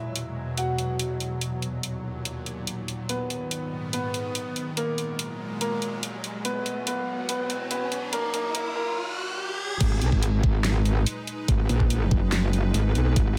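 A metallic FM wobble bass, overdriven and up front, crashes in at 9.8 s with a knocking electronic kick, and a second distorted wobble layer joins at 11.7 s, turning this heavy, aggressive half-time dubstep cut into a saturated drop. Before that, a natural grand piano carries the melody through dub echo over a detuned, morphing wavetable pad with ensemble chorus and sidechain pumping. The drum kit supplies a huge snare, handclaps, bright hats and crash cymbal, an electronic riser builds tension before the drop, and the mix sits in a light reverb.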